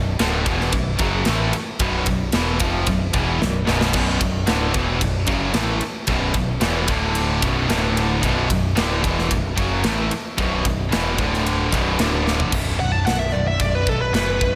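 Three riffing guitars open this dark, aggressive heavy metal excerpt in B minor at 112 BPM: a double-tracked, overdriven stack guitar with slapback echo, a scooped high-gain guitar and a tight distorted one, all sitting in the background over a growling, overdriven picked bass. A polished, up-front drum kit with a tight kick and bright cymbals joins at 0.2 seconds, with a fill around 3.4 seconds, as the chords shift between B minor and D5 and B5 power chords. At 12.8 seconds a high-gain lead guitar with slapback echo enters up front for a brief solo, all set in a big arena sound with concert-hall reverb.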